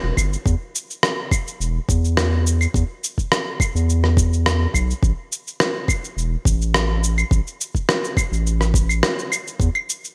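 A round analog bass opens this short sunset chillout cut, its deep, dark tone sitting up front with a fast attack and long, sustained notes in the low register from E1 to E2. The mood is warm and relaxed, moving in a straight 4/4 feel. An electronic kick drum enters at 0.2 seconds, soft and tape-tinged, alongside a sampler-style kit of claves, shaker and rim click that sounds compressed and gritty, pushed through overdrive and a gated reverb. A brief break arrives at 9.0 seconds before the passage ends. The overall production is bright and digital in a 1980s style, with light reverb and a digital ambience around the parts.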